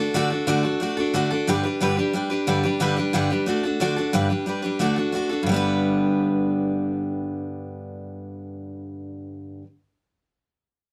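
A picked steel-string acoustic guitar plays alone, bright and full-bodied up front in a small room, driving a rollicking, rowdy rock passage at 180 BPM in G major as it moves between D and G chords across this roughly 9.7-second cut from a longer piece.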